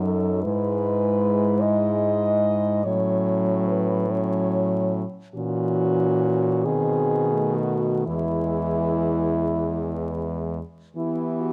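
A mellow French horn carries the melody of this lyrical, serene classical excerpt for horn quartet, its tone sounding distant and roomy as it sings between E4 and D#5. Beneath it, a second horn of similarly soft character traces a supporting line, while a third horn with vibrato and a close-miked presence fills in the accompaniment. The fourth horn anchors the bass from E2 to E3, warm, up front and touched with light vibrato. In 6/8 at a slow, rubato pace of roughly 40-51 BPM in dotted quarters, the harmony moves through E major, passing F#7/A# and B7b9 before settling on E at 8.1 seconds and turning to E minor at 11.0 seconds. Light reverb, detailed close microphones and vinyl crackle give this 11.5-second fragment an intimate, antique patina.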